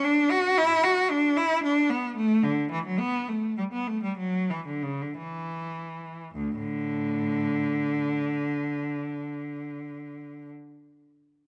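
A single bowed cello carries this classical, baroque-style suite movement alone, its rich, focused tone sitting up front with vibrato and a smooth top to its upper notes. The mood is radiant and dance-like, moving in 6/8 with a free, rubato feel that slows between 1.6 and 6.4 seconds. The line ranges from the instrument's deep lower register up into its singing upper reaches, shaped across two sections, the second beginning around 6.4 seconds. Close, detailed microphones capture the player intimately, with light reverb adding a touch of space. The cello falls silent at 10.5 seconds, and the clip is cut from a longer piece.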